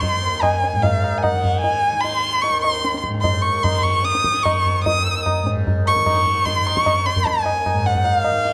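Introspective and meditative, this short passage of Hindustani classical music is cut from a longer piece and set in raga Bageshri on Eb, moving at 150 BPM in a straight 4/4. A single bowed violin carries the melody up front and close, its dark tone shaped by vibrato, soft attacks and expressive portamento as it sings between F5 and Eb6. Beneath it, a tanpura sustains a buzzing, shimmering drone from Eb2 to Eb3, softly plucked and sitting well back in the mix. The tabla keeps time throughout with a low-tuned, ringing sound that stays close and dry. All three parts play together across the full 8.5 seconds, framed by the lingering reverb of a recital hall and a warm production.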